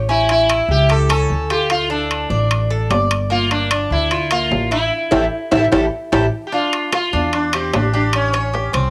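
Latin Cuban son and guajira at 149 BPM in a straight 4/4, set in D minor with a nostalgic mood and a homespun cassette feel. A picked Cuban tres with metallic double strings spins arpeggios, while a buzzing, shimmering sitar with sympathetic strings carries the melody up front, both tinted by cassette tape. Beneath them sits a woody, growly pizzicato upright bass, and ringing metal-shell timbales enter close and dry at 0.3 s; the band hits an accent from 4.9 s, capped by a drum fill at 6.1 s, before the chords move through Dm and C69 back to A7 in a moderate studio reverb.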